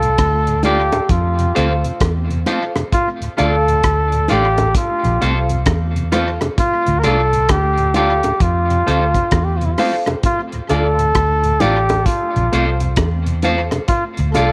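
A vibrato-laden flugelhorn sits up front with the melody, its tone soaked in tape echo as it moves between E4 and Bb4 in this serious, meditative piece of roots reggae. Set at a slow 66 BPM in D minor, the short passage cut from a longer piece sways on a swung sixteenth-note feel while the harmony alternates between Dm and F. Beneath it, a dark, foam-muted fingered electric bass sounds round and punchy, paired with a cloth-damped drum kit whose tight kick, hi-hat and rim click come through thuddy and rolled-off, with tape echo trailing the drums. A soft, flute-like tonewheel organ sits in the background with chorus vibrato, a slow rotary speaker and tape echo. From 0.6 seconds a clean, picked electric guitar with tape echo, woody upright piano stabs with long sustain, and tight, high-tuned bongos played with soft hands fill out the groove. Light small-room reverb gives the whole a close, intimate setting.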